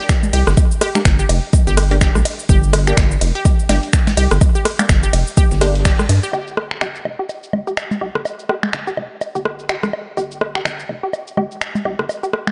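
A dry, dark-edged mix capped well below the highest treble opens this quirky, sparse minimal techno cut in G minor at 125 BPM, swung on the sixteenths, with a squelchy, detuned blip pluck riff with chorus and tape echo sounding first, quickly joined by an up-front overdriven electronic kick and a gritty, very quiet sampler-style kit of hi-hat and fat snare driving the drop until about 6 seconds, and by a rubbery, hollow square bass pumping beneath the pluck. A crisp-hatted garage kit of cabasa, finger snaps, hi-hat and ride, muffled by low-pass filtering, runs throughout alongside tape-echoed electronic woodblock, congas and rim click, while a nasal, phased dub chord stab sits in the background from 1.0 to 5.7 seconds. After a band accent at 5.9 seconds, the second half strips back to pluck, bass, garage kit and percussion as a filter sweep works over the pluck from 6.3 seconds.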